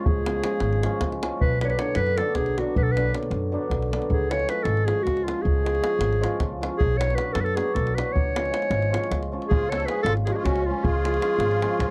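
Bittersweet and fiery, this short Balkan wedding-band passage in 7/8 puts a clear, soft-attacked classical-style clarinet up front over a ringing, hammered cimbalom, a thumpy, woody pizzicato upright bass and a tight davul in a dry, close 1970s-style studio sound, with a reedy, shimmering musette accordion adding a second line from 9.5 seconds as the harmony sways between C# and Bm.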